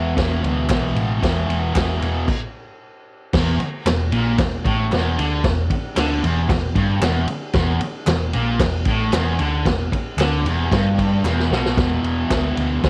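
Cut from a longer piece, this home recording on cassette with studio reverb captures raw, swaggering garage rock at 114 BPM, as a bright, double-tracked fuzz guitar riff on E5 sits up front over a round, hollow-body short-scale picked bass with tube saturation and a vintage drum kit with dark cymbals and a punchy kick, while crisp group handclaps stay in the background, with a stop at 2.3 seconds and a drum fill at 11.2 seconds.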